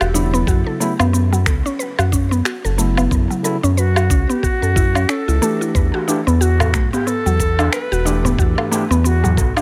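Meditative and earthy, this organic downtempo excerpt moves at 91 BPM in 4/4 with a gentle 16th-note swing, shifting from F#m7 to Em7 at 5.7 seconds. An airy, close-miked cedar flute carries the melody with soft attacks and vibrato, touched by digital delay, while a woody, full-bodied synth pluck spins chorused, delayed arpeggios beneath it. A clean tine electric piano, heard as if through built-in speakers, adds accompaniment with sidechain pumping and delay, and a deep, detuned analog bass sits up front, dark and sustained. The groove comes from overdriven, layered electronic woodblock, shaker and finger snaps, joined at 0.5 seconds by a gritty, thumpy, tape-toned kick drum. A crisp metal-shell darbuka enters at 5.9 seconds, distant in a large room, and the whole mix rests in a digital ambience.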